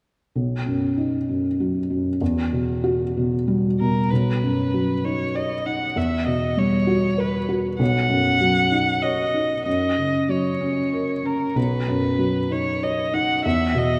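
Tender and hopeful, this neoclassical piano-and-strings fragment, cut from a longer piece, drifts at a rubato 96 BPM in 3/4 and B major, with a felt-muted upright piano up front giving mellow, intimate accompaniment full of audible action noise and short sustain, joined at 3.8 seconds by a single veiled con sordino violin carrying the melody with light vibrato and soft bowed attacks, all bathed in a lush hall reverb within a rough home-demo mix as the harmony moves through chords such as Emadd9, Badd9 and F#.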